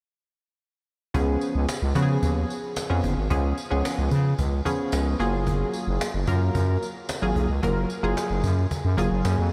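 A growling, thick FM bass sits up front alongside a punchy, chorus-tinged sawtooth polysynth comp in this feel-good, smooth early-eighties boogie funk excerpt, with a snappy cajon in the background and a jingly vintage tambourine playing from 1.1 seconds as the harmony moves from C#7 to F#maj9 at 5.2 seconds, all set in a dreamy mix soaked in huge ambient reverb.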